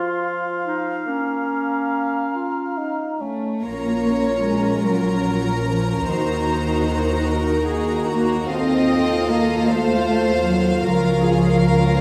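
A sul tasto violin section carries the melody in this solemn, yearning classical passage in Bb minor, moving in a slow, rubato 6/8 at around 46-53 BPM over a dark cello section, which enters at 3.2 s, and a double bass section. It opens with a brief wind chorus of clear clarinet and oboe, hollow silver flute and mellow bassoon, which gives way by 3.6 s to the strings, with a rich chamber violin section on a second line, a pure-toned viola section and a shadowy French horn section holding chords in the background. A recital hall reverb adds a wet bloom as the harmony moves from Bbm through Ebm and F7/Eb to Bbm/Db.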